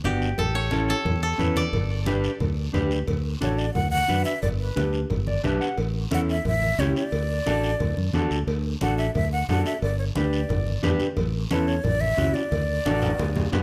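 A straight, festive cumbia groove in 4/4 opens with a bright, woody koto played with fingerpicks and touched by tape echo at 0.0 s, over a dark, clean electric guitar, a round, up-front fingered bass, thin-skinned congas, distant ringing cowbell and timbales, and a raspy guiro, before a breathy, expressive jazz flute with vibrato takes the sunny melody from 3.4 s and a drum fill closes this snippet at 12.5 s.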